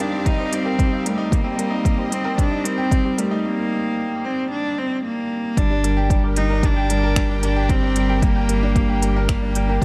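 Moving and cinematic, this G minor piano and strings electronica piece runs at 113 BPM in a straight 4/4, led by an intimate, close cello melody played sul tasto with an airy bow and delay, over a worn grand piano riff with long sustain and a round sine sub bass. A lush, distant string section holds sustained chords and a soft, dark pluck plays arpeggios with chorus, both pumping from sidechain along with the sub bass, while crisp hats and finger snaps sit in a small room and an overdriven deep kick arrives at 0.3 seconds. Shifting from Eb6 to Cm7, the music builds through a break from 3.4 seconds before dropping onto Gm at 5.6 seconds, set in a lightly reverberant studio space.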